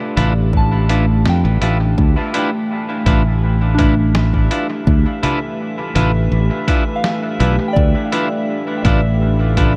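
Ambient dub at 83 BPM in a straight 4/4, this hazy, meditative excerpt sits in D dorian on a single Dm69 chord. A deep, moody ambient pad holds sustained chords with a slow attack, detuned unison and a sub octave, soaked in chorus and its own reverb, while a soft, vintage FM synth bell warbles through gentle arpeggios behind it with chorus and tape echo. A clean, picked electric guitar drops stabs with a warbly pitch drift into dub echo, and an up-front, direct fingered electric bass carries the low end as the strongest part. The rhythm comes from a muffled, pitched-down, sampler-style kit of congas, hi-hat and snare with dub echo, joined at 0.5 seconds by an overdriven electronic kick with a deep, small-room thump. From 2.4 seconds a glassy texture of drifting overtones floats quietly in the background, adding a calm shimmer under light reverb.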